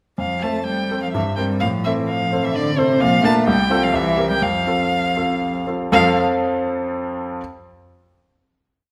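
Lively and spirited, this complete classical-period movement for piano trio unfolds in a supple, rubato triple metre. An expressive violin with vibrato, soft attack and portamento carries the melody up front, while an intimate, airy cello, bowed sul tasto and close, doubles the tune at the octave, and a clear, polished grand piano supplies syncopated chords with long sustain and audible action noise. The final chord arrives at 5.9 seconds; the strings release it at 6.2 seconds while the piano sustains it until 7.4 seconds in a reverberant recital hall.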